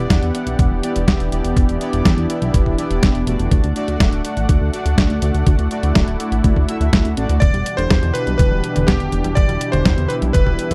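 A straight 4/4 pulse at 123 BPM drives this melodramatic, nostalgic italo disco piece in E minor, built on a thumpy electronic kick, an up-front sampler-style snare and hi-hat from a detuned 8-bit drum machine, a dark, glossy chorused synth bass, and a smooth, warbling analog pad holding sustained chords. Fat, brassy synth brass stabs with chorus, cassette tape character and tape echo ride over Em7 and D until 7.4 seconds, when a bright, cutting electric grand piano melody with vintage 12-bit sampler grit and tape echo enters with very quiet, round analog pluck arpeggios as the harmony returns to Em7. The sound is dry and close, like a 1970s-style studio recording.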